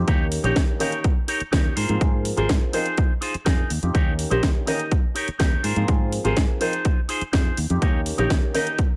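A punchy, up-front electronic kick drives this joyful, sunny filtered disco house excerpt at 124 BPM in a straight 4/4, its overdriven thump re-recorded in a large room. A layered house drum kit adds a cracking snare and hi-hats, also overdriven, with sidechain pumping on the hats. A foam-muted fingered electric bass sits warm and direct underneath, pumping to the sidechain until it drops out at 8.4 seconds. A bright, clean, picked electric guitar riff runs through an envelope filter for a twangy edge, while a dark baby grand piano supplies mellow, short-sustained accompaniment treated with phaser, both parts pumping as well. The harmony in Eb mixolydian circles through Eb7, Ab69 and Fm7, set in a digital ambience.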